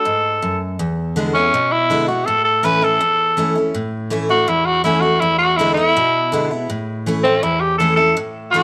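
A light studio reverb surrounds this short, upbeat rock excerpt with a retro feel, both parts sitting up front. A raspy, gritty tenor saxophone carries the melody as a pop-style solo throughout, over a bright, full-bodied picked steel-string acoustic guitar. The chords move from D to E7 and A, returning to E7 at 5.2 seconds before resolving to A.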